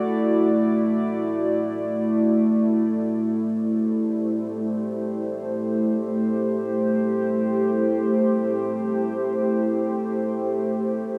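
Ambient excerpt in free time and A dorian, serene and spacious, where a lone warbly, nostalgic tape-like pad with a dark sub-octave body and slow-attack, sustained tones colored by chorus sits up front in a vast, wet reverb, shifting from Dadd9/A to Am7 at 2.8 seconds.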